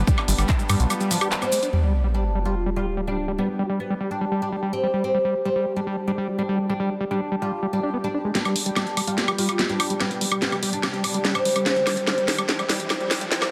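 A straight 4/4 pulse at 145 BPM in G major drives this intense, psychedelic trance excerpt, which opens on a drop where a heavy electronic kick, a fat analog bass and grainy background maracas sit with a drum and bass kit of cracking snare, bright hats, handclaps and woodblock, while a bubbling stepped-filter texture holds sustained chords, a woody, plectrum-plucked oud carries a phased, tape-echoed melody and a squelchy overdriven acid bass riff pumps alongside, before a sub drop impact at 1.7 s and a build-up from 8.3 s in which the kit returns with a drum fill, the acid bass takes a filter sweep, and a riser and noise sweep arrive within a lush hall reverb on a dense, heavily limited master.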